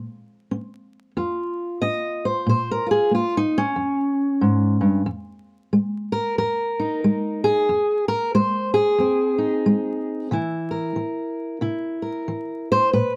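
A lone fingerpicked steel-string acoustic guitar carries this brooding, soulful excerpt of acoustic country blues, its dark auditorium tone sitting up front in light reverb over a bed of vinyl crackle. The guitar plays alone for the full 13.2 seconds at an unhurried, swung 4/4 pace, ranging from its low bass strings up into its upper register as the harmony moves from Bbm to Fm7 and then C7.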